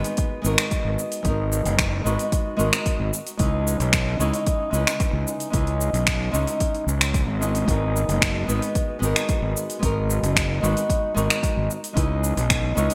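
A straight groove of a deep, overdriven electronic kick and an up-front deep house kit of cabasa, finger snaps and metallic hi-hats in gated reverb carries this relaxed, wistful sunset chillout excerpt, where a growly fuzz fingered electric bass sits forward beneath a small, dark fingerpicked nylon-string guitar with delay swaying between G#m9 and C#m9, all bathed in a lush hall ambience and bright 1980s-style digital production.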